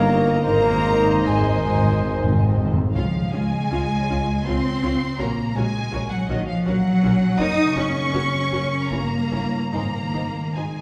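From the first moment, a full orchestra opens this lyrical, serene slow romantic movement in Db major, swaying in 3/4 at 70-84 BPM with rubato: lush vibrato violins carry the melody over background violins, a very quiet viola section, harp arpeggios that ring, clear cellos and focused double basses, while flute, dark clarinet, vintage-toned oboe, very quiet bassoon, up-front mellow horns and a soft tuba sound only until about 2.7 seconds, timpani on medium mallets play a fill in the background from 0.4 seconds and return at 9.7 seconds, all heard from further back in a reverberant recital hall.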